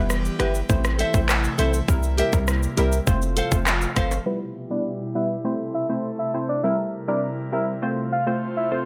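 A crisp, detuned wavetable chord stab and an airy, breathy pad open this sultry, hypnotic dancehall excerpt at 101 BPM in E phrygian, both pumping with sidechain over Em, Am, C7 and F, while a deep, boomy 808-style bass, a tight electronic island pop kit of kick, hi-hat, handclaps, rim click and shaker, quiet dry egg shaker and timbales, and fingerpicked classical nylon-string guitar arpeggios fill the first half until the drums drop out at 4.3 seconds, when a filter sweep begins and a round, dark octave-layered synth lead with vibrato takes the melody under light reverb.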